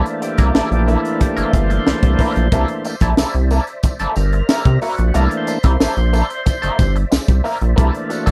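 Funky and energetic, this short funk passage at 91 BPM in 4/4 sits in C mixolydian over a single C13 chord, cut from a longer piece. A tonewheel organ takes the solo with full, thick stabs that carry key click and a lightly overdriven edge through a slow rotary speaker, while a second organ holds fat sustained chords in the background, coloured by chorus vibrato and the same slow rotary. Underneath, a rubbery square-wave bass sits up front with a bouncy, hollow filter pluck, joined from 0.1 seconds by a crisp fusion drum kit whose high-tuned snare, punchy kick and hi-hat sound gritty and saturated in a small, pumping room. An electric guitar at the edge of break-up adds twangy, compressed accompaniment through a wah. A jingly tambourine enters at 2.5 seconds, distant and bright in a large room behind the band, and the overall mix stays dry with little reverb.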